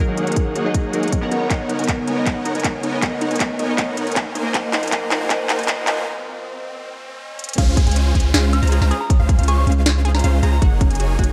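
Huge, detuned supersaw chords carry the riff through this bright, lush future bass excerpt, pumping against the kick and softened by a low-pass filter and tape echo. It sits at 158 BPM with a half-time feel in Db major, tuned to A4 = 436 Hz, and the chords move from Gb69 through Cbmaj9 and Ab13 to Dbmaj7. The opening build-up features filter sweeps, glassy digital keys with chorus and tape echo, a breathy pad, a punchy sawtooth pluck arpeggio and a very quiet riser and downlifter, with drum fills before a short break. The drop lands at 7.6 seconds, where the keys and pad stop, a very quiet ring-modulated pluck arpeggio enters high up, and a soft, pure FM bell melody appears in the background at 8.5 seconds, coloured by chorus, phaser and dub echo. Underneath throughout, a deep, mellow 808-style bass with tube saturation anchors the low end, while a hard-clipped electronic kick sits up front beside a trap kit with a sharp snare, crisp hats, handclaps and crash. 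The production is dark yet warm, with light reverb and digital ambience.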